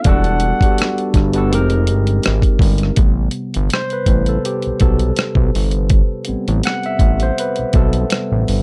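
Dark, warm and nearly dry, this smooth, late-night R&B and neo-soul clip is cut from a longer piece and moves at 82 BPM in 4/4 with a light sixteenth-note swing in A dorian. A gritty, compressed sampler-style drum kit sits up front with a thumpy kick, hi-hat and rim click, while a fat, thick analog bass with detuned sawtooth tone, fast attack and a filter sweep holds down the low end from 0.1 seconds. A jazz-style flugelhorn with a present tone and slapback echo voices a brief melody for just over a second at the start. The bright, barky tine electric piano, clean through a combo amp, plays accompaniment throughout and takes a solo from 3.0 seconds to the end. The harmony moves from Em11 to Fm11 before settling on Am9 as the solo begins.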